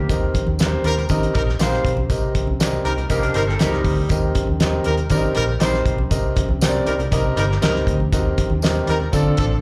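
A dark, foam-muted fingered bass and a cloth-damped, thuddy drum kit with a fat snare drive this passionate, urgent 1960s-style soul clip, captured as a live gig through the venue's PA with club reverb. A clear concert grand piano with deep bass and long sustain carries the accompaniment over alternating Eb6 and Cm7 chords, while a horn section with vibrato enters at 0.8 seconds with a second line, both touched by slapback echo. Very quiet ringing congas add color, a jingly tambourine sits in the background, and a twangy, slightly broken-up guitar through a small old amp plays a brief riff at 3.1 seconds.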